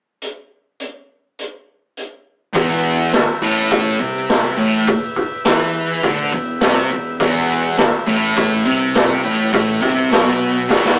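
Swaggering and gritty, this garage rock fragment, cut from a longer piece, opens with a raw drum kit alone, its punchy kick, medium-tuned snare and hi-hat sounding saturated and up front in a small room with a rolled-off top. At 2.5 seconds the band arrives over a single E minor chord: a thick, double-tracked fuzz guitar plays a low picked riff up front, its tone warm and distorted. Just behind it, a round, overdriven bass joins at 2.6 seconds, sitting in the background and adding fuzz to the low end. A vintage combo organ holds clean, buzzy sustained chords with light vibrato, also tucked in the background. The whole take has a rough rehearsal-room feel with light reverb and an AM radio tone, and a drum fill at 10.7 seconds pushes toward the cut.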